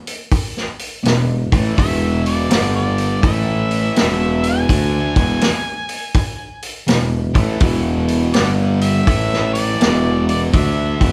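Blues rock power trio with a southern rock swagger, this gritty excerpt rides a swung groove as a vintage drum kit with a punchy kick and rolled-off top opens at 0.1 seconds. A sludgy, double-tracked overdriven guitar riff enters at 1.0 seconds, joined at 1.1 seconds by a mellow tuba bass with vibrato, and an overdriven harmonica with scooped notes carries the melody from 1.8 seconds, all in a moderate large-studio reverb that sounds like a band playing live in one room.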